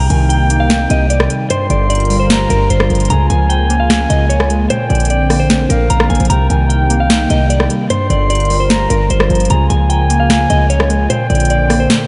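Soaked in a huge ambient reverb with a dreamy, dulled top end, this dark, menacing trap excerpt in C minor moves at 150 BPM with a half-time feel, as a clean, fingered electric guitar carries the melody alongside an airy, reedy concert flute second line with analog delay, warbling lo-fi synth keys with chorus, a deep detuned analog pad sustaining Cm7, Gm7, Db6 and Bbadd9 in the background, a punchy, up-front 808-style bass that drops out at 11.9 seconds, and an overdriven analog drum machine with a crisp snare, rim clicks and metallic hats.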